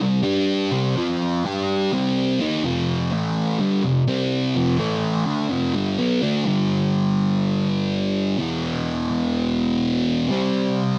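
A thick, fuzz-drenched electric guitar plays alone from the start, its picked, double-tracked power chords moving through G5, C5, F5 and A5 in a hypnotic, kaleidoscopic rock groove colored by distortion and phaser. At 6.5 seconds the passage shifts to a slower-moving progression of G5, E5 and C5, with the guitar sitting up front and sounding warm in a dry, close, 1970s-style studio room. This fragment is cut from a longer piece.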